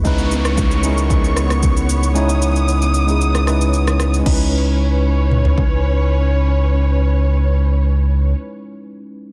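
A straight 4/4 amapiano groove at 114 BPM rides on a punchy, layered deep house kit of kick, rim click, shaker, toms and crash, its snare softly clipped, with the kick muted from 3.2 to 4.3 seconds and the drums stopping at 5.7 seconds. In C# minor over a C#m7 chord, a deep sine sub bass with an octave sits up front, while a mellow tine electric piano plays accompaniment and a dark, veiled, con sordino string section holds sustained chords, with an electronic downlifter faint in the background. The deep, soulful passage carries light reverb and digital ambience in a dense, heavily limited modern master.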